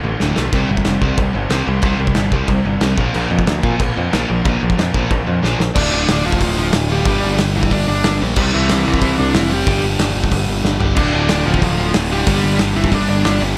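Angry and raw, this dry 184 BPM punk rock excerpt in D minor drives on a gritty, saturated indie drum kit with dusky cymbals and a pumping room, and a growly, punchy picked bass, both up front, under background riffs from a raw garage guitar, a sludgy overdriven guitar and a bright, compressed, double-tracked distorted guitar that drops out at 5.6 seconds and returns at 11.0, while a dark, smooth overdriven lead guitar carries the melody from 5.8 seconds.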